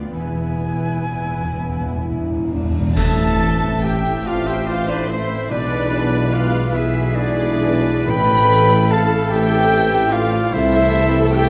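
Classical: a slow, elegiac and solemn romantic orchestral movement in A minor and 6/8 at 41-50 BPM with rubato, cut from a longer piece, in which a dark violin section carries the melody over a second violin line, violas, lush cellos, a rich double bass section, ringing harp arpeggios, a pure flute and mellow French horn chords. Cymbal swell, clash cymbals and bass drum enter alongside hard-mallet timpani, which play an opening fill before a band accent at 3.0 s brings in bright oboe, clarinet, trombones, distant trumpet stabs and a punchy tuba, with the timpani returning at 8.1 s, all set in a scoring-stage reverb.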